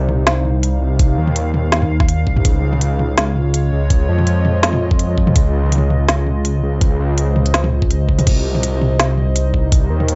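A deep, rumbling detuned saw bass sits up front from the start, its beating sawtooth and square tones giving this heavy, tense half-time drum and bass excerpt its dark weight at 165 BPM in C phrygian. An organic electronic drum kit with a woody snare, crisp hats, crashes and toms enters at 0.1 seconds, with a knocking, tape-warm electronic kick joining at 1.0 seconds, both set close in a small room ambience. Beneath them, a moody analog pad holds sustained chords with a slow attack and long release, colored by chorus and phaser and pumping against the sidechain. The harmony moves from C minor to D-flat add9 and returns to C minor at 8.3 seconds as the drop section repeats. The mix is dry and dark, its top end rolled off, giving the whole passage a murky, claustrophobic feel.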